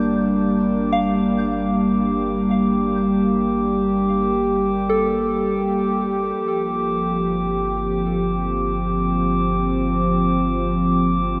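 Drifting in free time, this reflective, serene ambient fragment rests on a single Gm9 chord held by an up-front, detuned sawtooth analog pad with chorus, while a soft, warbling FM synth bell spins decaying arpeggios through chorus and delay as it fades out, a round sine sub bass with tube saturation fades in beneath, and a glassy, beating glass harmonica fades in on a high ethereal tone, set within a huge, wet reverb.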